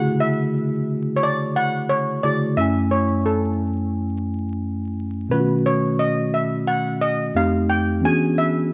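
A shimmering, metallic double seconds steel pan carries the melody throughout this short cut from a longer mellow, smoky hip hop piece. It is struck with hard rubber sticks and sits close-miked, dry and up front, with a bright, full tone. Beneath it, a clean tine electric piano heard through its built-in speakers plays the accompaniment across a low-to-high range, with a mellow, warm character, and it shares the steel pan's up-front placement. The groove has a light sixteenth-note swing. Lush extended chords drift from Dmaj9#11 to F#m9 at 2.6 s and B9 at 5.3 s, before F9 and E13 pass quickly near the close. The dark, warm production adds vinyl crackle and a moderate echo chamber reverb, giving the whole a hazy, late-night atmosphere.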